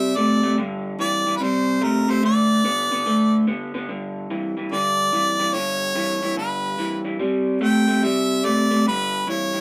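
Blues with a soulful, swaggering strut, swinging in 4/4 at 145 BPM in G major, this short cut from a longer piece sets a bright, close-miked harmonica on the melody, its soft-attack notes scooped and shaded with light vibrato in a jazz-style solo. Beneath it, an electric guitar through a small old amp picks out a riff in a slightly broken-up, compressed, lo-fi tone, both parts up front throughout the roughly 9.6 seconds. Light reverb gives the feel of a band playing live in one room as the changes move from Cadd9 through G5, C5 and D5 before settling on G.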